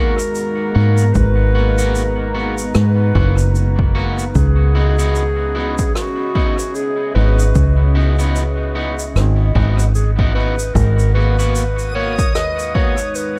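A foam-muted fingered electric bass sits up front with tube-saturated weight, anchoring this hazy, meditative ambient dub, cut from a longer piece. Above it, a mellow clarinet carries the melody in a classical solo style, its phrases trailing into dub echo, while a twangy electric guitar at the edge of break-up adds picked stabs that also repeat through the echo. A deep, dark pad of detuned sawtooth, sine and triangle layers with a sub octave holds slow-attack chords under chorus and its own reverb, moving from G#m7 to C#m11 and back. The drums pair an echo-soaked, small-room shaker and brushed rim click with a punchy, overdriven electronic kick that enters at 1.2 seconds, and the groove leans on swung sixteenths. At 11.4 seconds a reversed, granular texture swells in, high and bright in the background. The room sound stays dry, and the echo carries most of the space.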